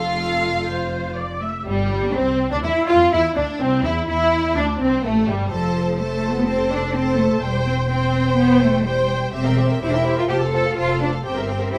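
A spirited, graceful classical-period movement for string orchestra opens with the full ensemble together in C major at a quick 125 BPM in straight 4/4. A focused first violin section with a smooth top carries the melody over an even second violin line, while expressive violas with portamento fill the middle and close, soft-attack cellos join woody, up-front double basses on a lush bowed bass line. The harmony moves from F through C/G, Am/C and C7/E before landing on C7/G at 11.2 seconds, all bathed in a moderate large-studio reverb in this brief cut from a longer piece.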